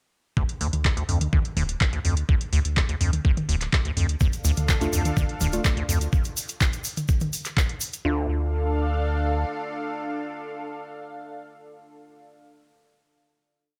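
Light reverb and a digital ambience frame this short, hypnotic and raw acid house piece, with a thumpy, tape-flavored kick sitting up front in a straight four-on-the-floor from 0.4 seconds. A booming analog drum machine adds metallic closed and half-open hats, handclaps on the backbeat and a mid tom, while a round analog bass plays deep, dark off-beat notes and pumps against the kick. Up front, a squelchy, hollow square-wave acid line runs an accented eight-step riff through a resonant filter sweep, roughened by overdrive and cassette-tape grit and also pumping. At 4.2 seconds a lush, thick unison pad enters with sustained detuned chords coloured by chorus and phaser, joined by a grainy hand-played shaker in sixteenths. At 4.8 seconds soft, warbling vintage chord stabs follow, moving one shape in parallel and trailing off in dub echo. From 8.0 seconds the groove gives way to a final D minor chord carried by the pad and the stabs, with the round bass holding on until 9.4 seconds.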